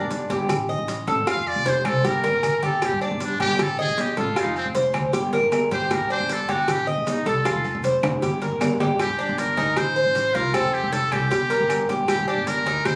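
Sultry and nostalgic, this Cuban son and guajira puts a buzzy, brilliant muted trumpet up front, soloing with light vibrato and scooped notes through the first 9.0 seconds over the picked, metallic double strings of a Cuban tres and the dark, thumpy gut-string pizzicato of an upright bass, while congas, a tight high-tuned cowbell, grainy maracas, ringing agogo bells and timbales, and woody claves sit in the background with drum fills at 1.7 and 7.5 seconds, all captured on a phone in the room with moderate reverb.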